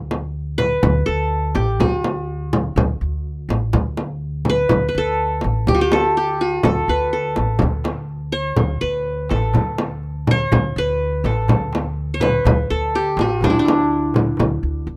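This rough home demo has a light reverb and an intimate, unpolished sound. It captures a stately fragment of an Arabic maqam ensemble piece in a steady, straight 4/4. The qanun carries the melody up front, its triple strings plectrum-plucked with a bright edge over a mid register. Beneath it, a pizzicato upright bass with steel strings gives a woody, warm low end, also placed close, while a small, bright frame drum sounds up front from a snug room. At 7.6 seconds a metal-shelled darbuka joins, crisp but very quiet and distant, as if heard across a large hall, adding a faint outer layer to the groove.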